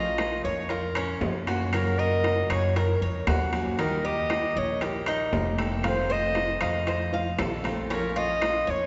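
Steeped in the long, dusky wash of a church-like hall, this sultry, danceable fragment of Cuban son and guajira sets a close-miked classical clarinet out front over a bright, full-bodied picked steel-string guitar, a metallic double-strung tres spinning arpeggios, and a dark, thumpy gut-string upright bass, while soft-handed round bongos, ringing vintage timbales and very quiet woody claves join at 0.2 s, a drum fill arrives at 7.1 s, and the chords move from Bbm through Gb and Eb to F7 before returning to Bbm.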